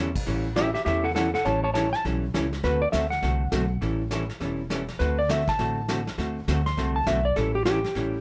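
Heard in a moderate club ambience, this short cut from a longer western swing number has a swinging sound with the strings set up front. At 203 BPM in 4/4 with a swung eighth-note feel, the cheerful A mixolydian groove moves between A7 and D7. A pizzicato upright bass with a woody, bright steel-string tone and a clean, picked hollow-body archtop guitar, miked and amplified, start together. A vintage brush drum kit joins at 0.2 s, with brushed snare, hi-hat, kick and crash cymbal carrying a rolled-off top and dark cymbals. A slide solo runs from 0.3 s, and at 0.6 s a clean, fingered lap steel guitar adds a shadowy second line high above the band.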